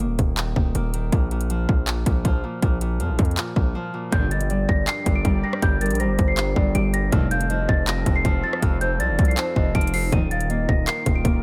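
Hip hop and trap in a menacing, hard-hitting half-time feel, this cut opens with ringing, fingerpicked Celtic harp over a saturated, distorted 808-style bass and an up-front trap kit of hard-clipped kick, metallic hi-hats, handclaps and rim clicks, then after a brief break a bell-like celesta melody with delay enters at 4.1 seconds alongside a detuned sweeping resonant pad and dark symphonic string stabs, joined moments later by a hollow, woody clarinet-like synth lead set in the background, the whole mix sitting in studio reverb.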